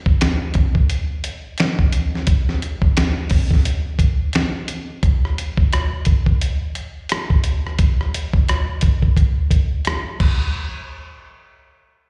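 A dusty, sampler-style soul drum kit opens this introspective, sultry R&B groove at 87 BPM in 4/4 with a lazy 16th-note swing, its gritty, compressed sound sitting up front with a thumpy kick, medium-tuned snare, rim clicks, hi-hat, finger snaps and crash cymbal, heard as if through a venue's PA in a recital hall with light reverb, playing from 0.1 to 10.4 seconds before this cut from a longer piece ends at 12.1 seconds.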